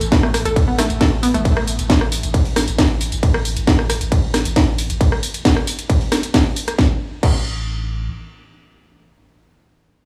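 Industrial and driving, this peak-time techno clip, cut from a longer piece, runs at 135 BPM in a straight 4/4 and opens squarely in the drop on an A5 power chord. A distorted, overdriven electronic kick sits up front, joined by a layered, overdriven kit of cracking snare, hi-hat, ride, crash, rim click and tambourine, its hats, cymbals and percussion pumping to the sidechain under studio reverb. Beneath them a deep, round sine sub bass holds on A1 with overdrive, a low-pass filter and pumping sidechain, sustaining until 8.1 seconds. A detuned sawtooth-and-square analog pluck with a noise layer and a snappy filter spans A3 to A4 with chorus and digital delay until 1.4 seconds. Meanwhile a very quiet, nasal, granular drone swarms with tense, evolving unison detune and a moving notch until 3.3 seconds. The harmony falls away at 6.8 seconds, and the drums drop out at 7.4 seconds, leaving the bass alone in a small digital room ambience.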